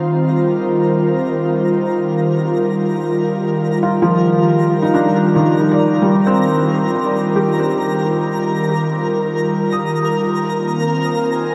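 An airy, breathy pad holds sustained chords while a felt-muted upright piano plays soft, intimate arpeggios through delay, both sitting up front in this weightless ambient passage in 3/4, cut from a longer piece. Quietly, a twinkling granular texture with an octave-up shimmer fades in across the full 11.5 seconds. A huge, wet reverb with a 7.2-second tail surrounds the parts, and the harmony moves from Ebmaj9 to Abadd9/Eb at 10.2 seconds.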